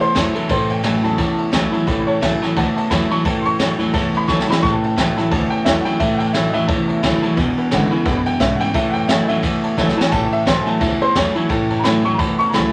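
The recording sits in a moderate studio reverb that gives this short, rollicking rockabilly cut from a longer piece a retro, natural glow, with a swung feel throughout. A worn, woody, slightly detuned upright piano carries the melody and solos across the whole passage, while a second, jangly honky-tonk upright piano adds vintage accompaniment from the background. A full-bodied jumbo steel-string acoustic guitar is picked beneath them, and an electric guitar at the edge of break-up picks a low riff with a warm, slightly broken-up tone. Further back, a pizzicato upright bass with gut strings supplies a dark, thumpy bottom end. Up front, a jazz kit played with brushes pairs a high-tuned snare and boomy kick with dusky cymbals, dropping in short fills at 4.3 and 9.8 seconds, while the harmony moves from A to E7 and back home to A.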